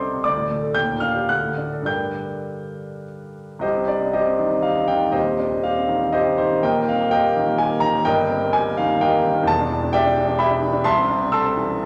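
Set in a reverberant recital hall, this stormy, passionate romantic character piece for solo grand piano, a fragment of a longer work, moves in a rubato 3/4 at 100-133 BPM, its clear, intimate, up-front tone carrying audible action noise and long sustain as it spans the keyboard from deep bass to bright treble, turning from G minor to C minor at 3.6 s.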